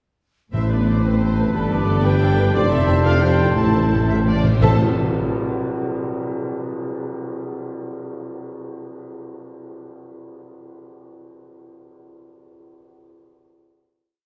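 The warm cellos and woody double basses anchor this brief, determined, swashbuckling heroic film cue in A minor, a 6/8 theme at 111-120 BPM in which dark violins carry the tune while clear violins, airy flutes, oboe, a very quiet clarinet counter-melody, violas with portamento, mellow French horns, trombones, trumpets, tuba, a barely audible ringing harp, hard-mallet timpani and bright cymbal swells with tam-tam gather into a slowing passage from 2.0 seconds, a timpani fill at 3.6 seconds and a band accent on the final chord at 4.6 seconds, all heard from deep in a reverberant scoring stage.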